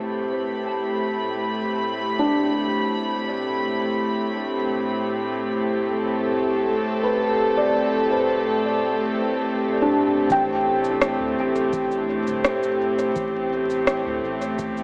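A rich, floating string section sits up front in this spacious, hazy ambient dub fragment, its bowed, sul tasto chords sounding pure and soft at the attack. Beneath it, a felt-muted upright piano plays dark, mellow arpeggios in the background, its action noise audible through thick felt, while a filter sweep passes over it and dub echo trails its notes. At 10.3 seconds the groove arrives: overdriven electronic cabasa and rim click with dub echo and studio reverb, a tape-toned analog kick drum set back in the mix, and a round, deep sub bass holding sustained notes underneath. The straight, unhurried pulse lets the strings keep their hovering quality even after the percussion joins. A concert hall reverb, vinyl crackle and a small-speaker tone give the whole passage a dusty, distant character.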